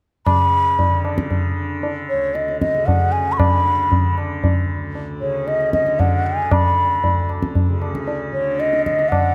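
A straight 3/4 pulse at 115 BPM carries this devotional, radiant passage of Hindustani classical music in raga marwa on D, tuned to A4 = 439 Hz and cut from a longer piece. The bansuri carries the melody from 0.3 to 9.3 seconds, moving between C#5 and C#6 with a breathy, mellow bamboo tone, vibrato, tongued notes and rolled-off highs, sitting up front and trailed by a tape echo. Beneath it, the tanpura holds a softly plucked drone between D2 and D3, its buzzing, shimmering resonance kept low in the balance. The low-tuned tabla, also up front, gives short-ringing acoustic strokes with a small-room character. Close, detailed microphones and light reverb give the recording an intimate, clear presence.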